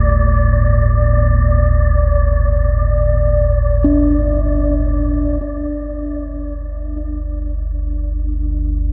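A huge, wet reverb and the warbling pitch drift of worn cassette tape wrap this ominous, unsettling dark ambient drone excerpt, which moves in free time over a Gsus2 harmony. Up front, a deep, rumbling drone with a nasal, detuned edge and a touch of chorus sustains throughout, while a breathy, wind-like tuned noise texture hangs high above it until 5.5 seconds. A pure, ringing quartz singing bowl plays meditative arpeggios through tape echo, its slow beating growing more present as it fades in from 5.4 seconds.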